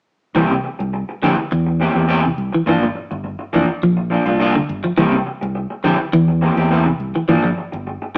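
Heard through a small speaker, this short slice of a longer afrobeat piece captures a band playing live in one room, wrapped in a moderate studio reverb. The mood is hypnotic and driving, with a straight 4/4 pulse that sits on a repeating C7 to Gm7 change. Up front, an electric guitar at the edge of break-up plays dark, slightly gritty stabs, fingered rather than picked. Beneath it, a fingered electric bass holds the low end with a round, direct, amped tone. A clean electric guitar joins at 0.4 seconds with warm, picked arpeggios in a lower register, dropping out at 7.6 seconds while the stabs and bass carry on to 8.2 seconds.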